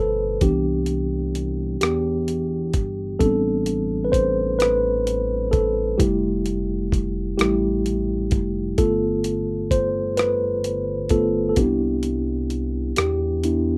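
A rough home-demo mix with light reverb carries this late-night, sultry slow R&B fragment in a straight six-eight, cut from a longer piece. A mellow, clean tine electric piano sits up front and takes the lead throughout, moving through Cmaj9, Am11, Fmaj7 and G9 before returning to Cmaj9, while a dark, sustained synth bass with a touch of vibrato hums beneath it. From 0.4 seconds a gritty, compressed sampler-style drum kit adds a thumpy kick, hi-hat and rim click with a tape-warm character.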